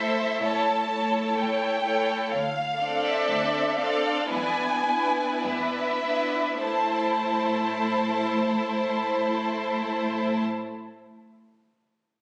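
The rubato pulse in 4/4 drifts between 48 and 65 BPM, slowing through the first 6.6 seconds before a new section begins, in this slow, elegiac and solemn romantic movement for string orchestra in A minor, tuned to A4 = 444 Hz. Up front, a warm violin section carries the expressive melody between E5 and A5, while a second violin section with a rich, focused tone and a smooth top sings the inner line from E4 to D5. Further back, a clear viola section fills in the accompaniment from A3 to E4, and the cello section anchors the bass from D2 to A2 with expressive bowing. All four bowed sections play with vibrato and a lush ensemble sound throughout the 10.4 seconds, as the harmony moves from A7 through D5 and E7 to a resolving A minor at 6.6 seconds. Captured on a phone in a recital hall with a moderate 1.7-second reverb, the fragment is cut from a longer piece.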